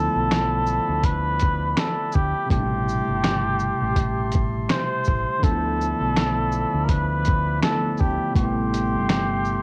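A lazy 82 BPM lo-fi hip hop groove in D dorian swings its 16ths, with a gritty, sampler-style drum kit of thumpy kick, fat snare, hi-hat, shaker and finger snaps sitting up front from 0.3 seconds, tape-saturated and re-recorded in a small room, over a round, punchy fingered electric bass. A cup-muted trumpet carries the hazy, melancholic melody with soft, veiled tone, vibrato and scooped notes, while a bell-like tine electric piano and a warm brass ensemble holding sustained chords fill in the Dm69 to Am7 changes, all three filtered and tape-worn. Light digital reverb and a cassette home-recording character give this short excerpt a dusty, intimate glow.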